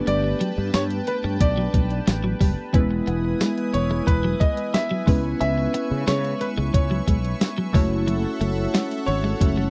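Nostalgic and glossy, this 1980s-style pop piece sets a baby grand piano melody with tape echo over glassy digital keys, a shimmering chorused pulse-width pad and a clean electric guitar riff in the background, with a growly, punchy fretless bass and a thumpy 12-bit drum machine of kick, hi-hat, snare and tambourine up front, all in a dry, close studio sound moving through Gadd9, Emaj7, C#m7 and F#m7.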